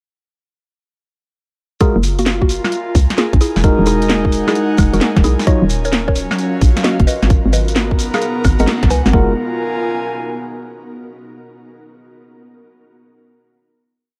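A dry, gritty recording with light reverb carries a sunny, bouncy two-step UK garage piece at 131 BPM in F# major, swung on the sixteenths. From 1.8 s a tight, up-front electronic kick and a garage kit of cracking snare, skipping hats and woodblock drive the groove, joined at 2.0 s by a hollow, punchy FM bass line. Grainy hand-played shekere sits in the background, a woody, round mallet-like synth pluck repeats a dark riff in thirds and sixths through chorus, phaser and tape echo, and a clean tine electric piano adds sparse echoing stabs. A breathy, bright pad moves through slowly shifting chords from F#maj9 to G#m9, joined at 6.2 s by a mellow, ethereal detuned pad with ensemble chorus, before the breathy pad holds the final F#maj9 chord alone until 10.9 s.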